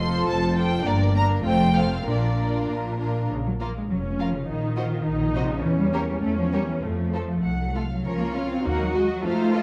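In a quick 2/4 at 101 BPM with a flexible, rubato feel, this spirited classical-period movement for string orchestra moves with lively energy, and it is cut from a longer piece. It opens in Bb major, then darkens into Bb minor at 3.3 s, where chords such as Cm7/Bb, Em6 and Ebm add colour. A lush violin section carries the melody between C5 and C6 with smooth vibrato from a distant placement, while a second, closer violin section sings a supporting line below it. The viola section fills in the accompaniment with expressive, sliding portamento, the cellos give the bass a focused tone with a smooth top, and the double basses anchor the lowest register with an even, bowed sound. All five sections play throughout, set in a recital-hall reverb that lends the whole a dark, warm production.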